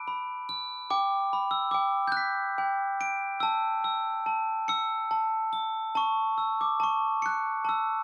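A solo glockenspiel struck with soft plastic mallets carries this innocent, tender children's piece, its bell-like, ringing tone sitting up front in a boxy small room with light reverb. In a gentle 6/8 at 48 beats per minute, it moves through B minor, G and A across a range from G5 to B7. The dark, warm production lends intimacy to this eight-second fragment of a longer piece.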